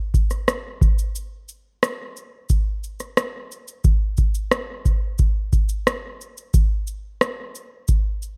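Pop with an easy-going, carefree mood, built on a straight pulse in four. A booming analog drum machine sits up front with a deep kick, a rim click and a shaker, its electronic tone heard close and detailed in a dry space. The drums run from 0.1 to 8.4 seconds through this short section cut from a longer piece.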